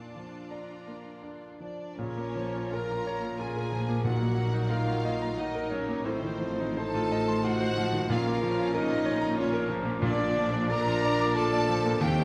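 A clear, polished concert grand piano opens this lush, lyrical romantic movement up front, carrying the melody in a rubato triple metre over bowed strings: a focused violin section also carries the tune from a distance, a smooth second violin line sits in the background, a very quiet viola section fills in the accompaniment, and a rich, close cello section anchors the bass with vibrato. At 1.6 seconds an airy, hollow small flute group adds a background second line while a mellow French horn section holds tight sustained chords. From 2.0 seconds a dark, roomy trombone section joins the chords very quietly, a solo trumpet with soft-attack vibrato places stabs in the distance, and an expressive double bass section deepens the low end. Soft-malleted timpani enter at 4.0 seconds with a round, very quiet presence. The harmony moves from a bright major opening into a minor home chord before returning to major, and a moderate recital-hall reverb gives this cut from a longer piece a detailed yet spacious sound.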